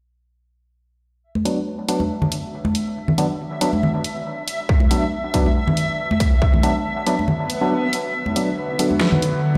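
The rhythm sits in a half-time 4/4 at 139 BPM, with a light swing on the sixteenths giving this deep dubstep fragment in B minor a loose, unhurried gait. Congas with bright, hard hands and dub echo arrive first at 1.4 seconds, joined by a dubstep drum kit with a huge snare and bright hats under studio reverb, while a hollow, nasal organ stab with chorus and dub echo sits up front over a Bm chord. A reversed, dreamy texture with granular shimmer hangs high above, and a distorted, tape-warm electronic kick punches through from 4.7 to 6.5 seconds. A faint electronic swell leads into a build-up at 8.1 seconds, where a deep, chorused wobble bass murmurs in the background. From 8.5 seconds an overtone-sweeping drone with a filter sweep moves through its resonant, sawtooth-edged chords, and at 8.6 seconds a breathy, reedy melodica plays a brief dark phrase through dub echo. The whole piece rings in a cavernous stone room with a long ambient tail, as if played on a big sound system in a bare space, leaving a meditative, echoing mood.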